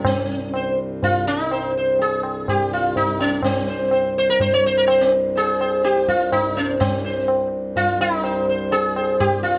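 Introspective and meditative, this short excerpt from a longer Hindustani classical piece moves at 125 BPM in a seven-beat cycle with a straight feel, set in raga Bhairavi on C. The sitar carries the melody up front, its bright, buzzing plucked tone ringing with shimmering sympathetic strings as it moves between C4 and Db5. Beneath it, a hand-pumped harmonium holds a low drone, reedy and breathing, with a mellow glow that sits well back in the mix. The tabla keeps time with a high-tuned voice and a short ring, sounding close and dry. All three parts play throughout, and the music shifts into a new section at 6.8 seconds before the cut at 9.6 seconds. Closely placed microphones capture fine detail, while a moderate recital hall reverb lends the sound a sense of space.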